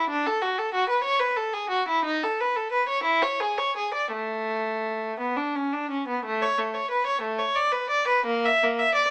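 A lone bowed violin with a reedy, gut-string tone and light vibrato plays a serene, dance-like baroque-style suite movement in 6/8 with rubato, moving into a new section at 6.2 seconds in this brief portion cut from a longer piece, set in light reverb with a small-speaker sound.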